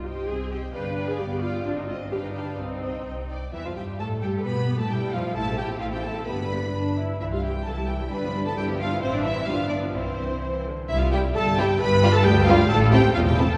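Lush, vibrato-rich violins carry the melody high above a second violin line in this graceful, lively classical-period string orchestra excerpt, moving briskly at 131 BPM in 2/4 with a flexible rubato feel. The tonality turns from C minor to C major at 3.5 s. Distant violas with expressive portamento fill out the accompaniment, while focused cellos sit in the background and a warm, up-front double bass section anchors the low end. The whole ensemble blooms in a church-like hall with a 2.8-second reverb tail.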